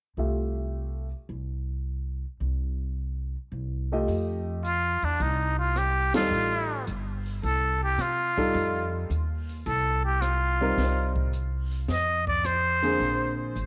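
A small room and light reverb give this small-group swing and bop excerpt a close, softly rounded sound with a dulled top end. At 108 BPM in 4/4 with a lilting swing feel, it opens in F major with intimate concert grand piano, showing audible action noise and short sustain, alongside a woody pizzicato upright bass sitting up front. At 4.1 seconds the harmony shifts to F mixolydian as an open jazz drum kit joins, its dark cymbals, high-tuned snare, boomy kick, ride, hi-hat and rim clicks sitting lower in the mix. The trumpet with straight mute takes the melody from 4.7 seconds, nasal and breathy with vibrato, a soft attack and a touch of tape echo, sounding whispered and close-miked at the front. A band accent lands at 6.0 seconds, and the playful mood carries through chords moving from F9 to Cm7 and on to Bb9.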